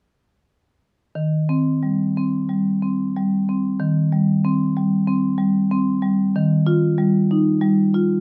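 Flowing and playful, this short contemporary classical passage for solo marimba moves with a free, rubato feel in 4/4. Struck with medium hard mallets, the marimba sounds vintage and band-limited as it plays from 1.2 to 8.2 seconds in its lower and middle register, resting on an Eb6 harmony before shifting to Ebadd9 at 6.3 seconds. Close, detailed miking with little reverb keeps the instrument dry and up front.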